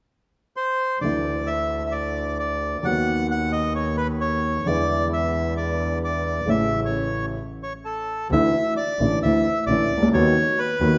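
A reedy, up-front bandoneon opens the melody at 0.6 s in this melancholic, tense tango at 132 BPM with a rubato feel, joined at 1.0 s by a woody, slightly detuned upright piano with audible action noise and a distant, nasal, earthy bowed double bass with light vibrato, moving through Dsus2, B/D#, E7 and A before a stop at 7.4 s, all set in a reverberant recital hall and cut from a longer piece.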